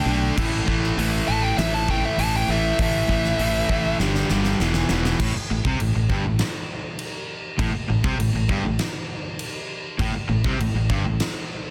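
A straight 4/4 pulse at 100 BPM drives this aggressive, heavy hard rock passage in A minor, cut from a longer piece. A dark, overdriven lead guitar opens with a short solo between E5 and A5, colored by tape echo, and it stops at 4.0 seconds as the big-room acoustic drum kit rolls through a fill with its fat snare, punchy kick, hi-hat and crash cymbal sitting up front. Beneath the lead, a bright, cranked stack guitar pounds out the riff in the foreground, joined in the background by a hollow-bodied, overdriven semi-hollow guitar picking a riff in the same low range. A growly, direct fingered electric bass anchors the low end from E1 to C2. At 5.2 seconds the band settles onto an A minor chord for the second section, all wrapped in light reverb and small room ambience with a dense, heavily limited modern master.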